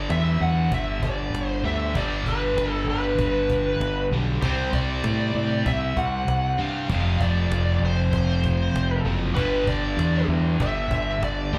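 Hard rock with a powerful, swaggering mood at 97 BPM in a straight 4/4, heard as a live club gig through the venue's PA with roomy reverb, moving from G through C5 and F5 to G5 in this short excerpt. A dark, distorted lead guitar carries the bluesy melody up front with slapback echo, while a growling, overdriven fingered bass sits forward and direct beneath it. Behind them, three bright picked guitars play the riff: a double-tracked cranked stack guitar with overdrive and slapback echo, a distorted electric guitar, and a very quiet second cranked stack guitar, all set against a woody, close and dry cajon struck with hard hands and faint snares.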